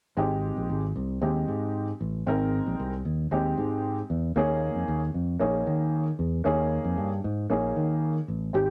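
Joyful and warm, this short cut from an uptempo 1960s-style soul piece moves at 115 BPM in 4/4 with a straight feel in Ab major, shifting from Abmaj7 to Eb7sus4 at 4.4 seconds. A dark, woody upright piano with audible action noise and a slightly detuned, worn character plays accompaniment up front alongside a growly, punchy fingered electric bass from 0.2 seconds. At 8.6 seconds, a soft, flute-like tonewheel organ carrying chorus vibrato, key click and a slow rotary speaker touches a single melody note, all set in a moderate studio reverb.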